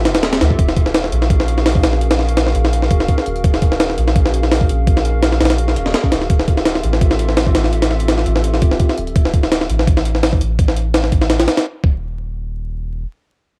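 A dark, atmospheric stretch of drum and bass in the jungle vein, cut from a longer piece and landing squarely in the drop, with a light swing on the sixteenths. A sampler-style breakbeat kit sits up front, compressed and pitched up, its gritty hi-hats, thumpy kick and high-tuned snare carrying a cassette-tape grain until 11.9 seconds. Underneath, a soft dub sub bass holds round, deep tones built from triangle and square waves, its fast attack and sustained notes also placed up front and running to the end at 13.0 seconds. A warbling, nostalgic pad drifts above with detuned, slow-blooming chords, colored by chorus and its own built-in reverb, shifting between minor eleventh chords before dropping out at 9.1 seconds. The overall sound is dry and lo-fi, like a home cassette recording dusted with vinyl crackle, and the final moments leave the bass alone after the harmony drops away.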